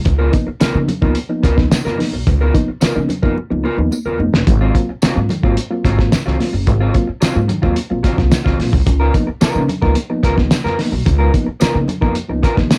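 A dark, slightly broken-up electric guitar and a woody, thumpy upright bass open this gritty, strutting funk snippet at 109 BPM, joined at once by a reedy, worn electric piano with fast tremolo and light overdrive, a muffled, saturated drum kit with a fat snare sitting up front, very quiet high-tuned congas and, from 0.6 seconds, a jingly tambourine, all moving between Db13 and Ab13 chords in a lo-fi cassette home recording with light reverb, with a drum fill from 3.4 to 4.5 seconds leading into the second section.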